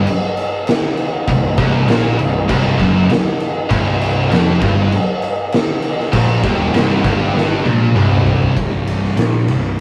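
Stoner and doom metal riffing in C minor at 99 BPM, sludgy and heavy, cut from a longer piece and captured as a rough rehearsal-room recording with warm saturation and light reverb. A bright, double-tracked high-gain guitar and two dark, fuzz-soaked guitars, one very quiet and one in the background, grind out a low riff on a C minor chord, underpinned by a growly, overdriven picked bass. Up front, an oversized low-tuned drum kit with a punchy kick, fat snare and dark cymbals rings in a stone room, rolling into a fill at 7.3 seconds before the high-gain guitar drops out at 8.6 seconds and the chord gives way to a chordless tail carried by the fuzz guitars, bass and drums.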